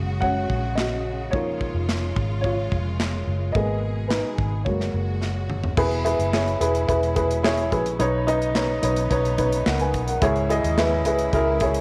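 Anthemic and hopeful, this piano-driven pop excerpt moves at 108 BPM in a straight 4/4, cut from a longer piece. A dark, woody upright piano sits up front with a mellow, slightly detuned character, carrying the lead as a solo through the first 5.8 seconds over a harmony that drifts from F#sus2 through C#6/E# and G#madd9. Beneath it, a vintage muted electric bass played with the fingers gives a round, foam-muted, amped low end, while a bright, lush string section sustains bowed chords with intense vibrato at a lower level. A modern acoustic drum kit joins at 0.2 seconds with a punchy kick, medium-tuned snare, hi-hat, handclaps, toms and crash cymbal, and a drum fill at 5.2 seconds leads into the second section. From there the chords shift to E, Badd9 and C#m, all set in light studio reverb.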